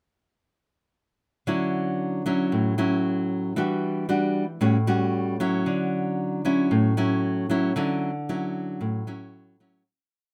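In a straight 4/4 at 114 BPM, this short, relaxed and sunny bossa nova piece in D major features a solo nylon-string guitar that enters at 1.5 seconds. Its warm, small, up-front tone is fingerpicked, with thumb bass and syncopated plucked chords moving through Dmaj9, Em9 and A6. Close, detailed miking and light reverb frame the guitar before the piece fades out from 7.8 seconds.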